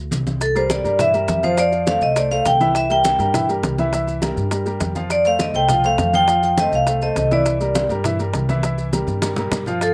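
Sophisticated and lively, this Afro-Cuban jazz excerpt puts a bright, metallic vibraphone up front, its medium hard mallets and slow motor vibrato carrying the melody from 0.4 seconds with a slapback echo. A warm baby grand piano with long sustain and its own slapback echo accompanies over chords moving through C9, F69 and C7, while a woody, thumpy pizzicato upright bass on gut strings anchors the low end. Damped, low-tuned congas, tight, high-tuned cowbell and bongos with slapback echo, and quieter, grainy maracas fill out the percussion, with a drum fill at 8.9 seconds, all heard outdoors with little reverb.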